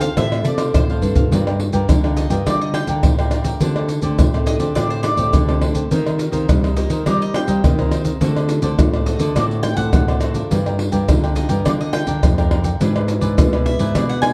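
A dark production sits in a moderately large studio reverb, giving this bittersweet, yearning samba and choro excerpt a roomy glow. At 104 BPM in straight 4/4 and G minor, a bright, woody mandolin carries the melody with picked double strings. A crisp, picked cavaquinho fills in the accompaniment beneath it, alongside a fingerpicked classical nylon-string guitar set in the background. A second nylon-string guitar holds the bass line, its fresh strings giving a deep, fingerpicked classical tone. Up front, maracas, pandeiro, tamborim and a tight surdo sound acoustic and close, as if in a small room, with hard hands; a drum fill from 0.6 to 1.3 s leads into the main passage. The harmony moves from Dm7 through Gm7, D7sus4, Cm7/Eb and D7, returning to Gm7 before ending on E7/G#.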